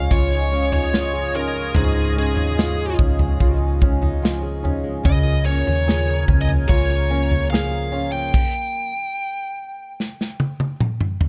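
This pop ballad excerpt feels heartfelt and tender, moving at an unhurried pace in a straight four. A biting, overdriven electric lead guitar carries the melody over clear concert grand piano chords with deep bass and short sustain, while a sweeping sawtooth pad with a slow attack and chorus holds bright, evolving chords above. Set in the background, a fingerpicked steel-string acoustic guitar with old strings and a woody, full-bodied tone plays arpeggios through a digital delay. A vintage foam-muted electric bass adds a dark, round low end, and an airy, polished country drum kit sits up front with bright cymbals and a punchy kick. The band stops at 8.3 seconds, and the lead guitar continues until 10.8 seconds while the drums close with a fill from 10.0 seconds, all in a small room.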